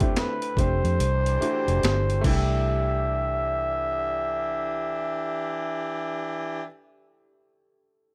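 Smooth and sensual, this short R&B and neo-soul excerpt moves at a relaxed 72 BPM in 4/4, with a swung sixteenth-note feel in C major. A trumpet with a bucket mute carries the melody up front, its veiled, raspy tone growling with vibrato over a smooth top. A clear concert grand piano with a worn character and short sustain plays accompaniment, while a distant, roomy horn section adds tight jazz-style stabs. A vintage fingered electric bass, dark, round and foam-muted, sits up front beneath the harmony, which moves from F69 to C69. The gritty, tape-tinged boom bap drum kit, with a thumpy kick, high-tuned snare, finger snaps, hi-hat and crash, plays only until 2.5 seconds, its kick dropping out from 1.0 seconds, and the piano rings on alone until 8.1 seconds under a light reverb.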